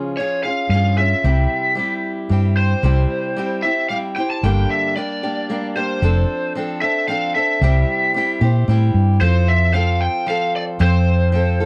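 A boxy, picked ladder-braced acoustic guitar opens this jangly, hopeful folk and heartland rock waltz fragment. It is joined from 0.2 seconds by a dark, overdriven lead guitar melody from a small cranked amp, and from 0.7 seconds by a round, hollow-body electric bass sitting up front, all captured in a dry, close 1970s-style studio sound.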